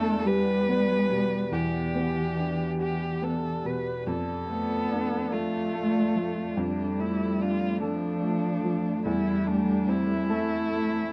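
Neoclassical piano and strings in a slow, rubato 6/8 at 48 BPM, this short passage from a longer piece feels longing and fragile. A single muted violin, played con sordino with bowed vibrato, carries the veiled melody up front, while a lone cello, likewise muted and dark, traces a second line beneath it with touches of portamento. A clear upright piano sits close to the listener, its woody, slightly detuned and boxy tone ringing with long sustain as it provides the accompaniment. From 0.2 seconds a deep, moody analog pad enters in the background, holding mellow sustained chords with a slow attack, long release, sub octave, chorus and phaser. The harmony moves from Em7 to Dm/F at 4.1 seconds and settles on Am/E at 9.1 seconds, all set in light reverb within a dusky production.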